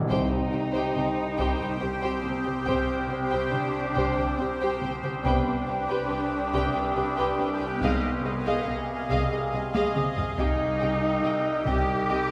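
Tense and uneasy, this suspense film score excerpt moves at 70 BPM in 3/4 in C harmonic minor, its muted, con sordino strings (two violin lines, violas, two cello parts and double basses) bowing with veiled vibrato beneath a resonant sawtooth drone of moving overtones treated with chorus and phaser, a bubbling stepped-filter texture holding sustained chords from 0.8 seconds, and a very quiet, distant French horn section. A close taiko ensemble struck with hard sticks drives the pulse and plays a fill at 9.7 seconds, while the up-front cello riff and the double basses carry the low end as the harmony passes from Cm through G/C and Fm7/C back to Cm. At 10.4 seconds a faint, high violin texture enters, all of it heard from further back in a wet scoring stage reverb.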